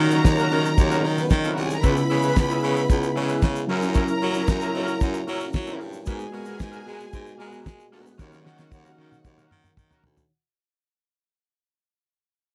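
A straight 4/4 disco groove drives this sultry excerpt, carried by a damped 70s drum kit of hi-hat, kick, snare and toms, with a fat snare and tight kick sitting up front under a rolled-off top. A growling baritone saxophone takes the bass role, raspy and breathy with vibrato, gritty and present in the mix. A mellow tine electric piano heard through its built-in speakers, a twangy, picked electric guitar at the edge of break-up with harmonic tremolo, and a tight French horn section holding sustained chords in the background fill out the harmony, moving from D#m7 through C#m7, F#7 and G#m9 back to D#m7. A clear, focused string section plays a bowed second line with vibrato, while a grainy, bright tube shaker sits behind in a live room. The recording is dry and close in a 1970s studio style, and the passage fades out throughout, with a drum fill arriving at 8.2 seconds.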